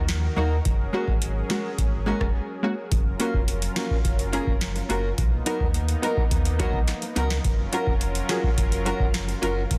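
Dry, dense and heavily limited, this tough, bouncy dancehall excerpt at 106 BPM rides on a booming analog drum machine with a deep kick, crisp snare and metallic hats up front, a full sine sub bass with octave, fingerpicked nylon-string guitar arpeggios with audible finger squeak and tape echo, punchy detuned sawtooth chord stabs and a lush, nasal unison pad, the stabs and pad both pumping under sidechain with chorus, as the harmony moves from Ebm through Gbadd9, Bmaj7 and Gbmaj7 around a short break at 2.4 seconds.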